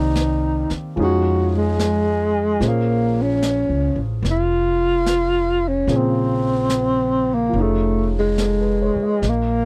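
Jazz ballad in Bb minor at 73 BPM with a swung, intimate and smoky mood, led by a dark, breathy tenor saxophone up front with whispered subtone, vibrato and scooped notes over warm grand piano accompaniment with audible action noise, a woody pizzicato upright bass and a brushed drum kit entering at 0.2 s, heard in a dry, close 1970s-style studio sound as a short cut from a longer piece.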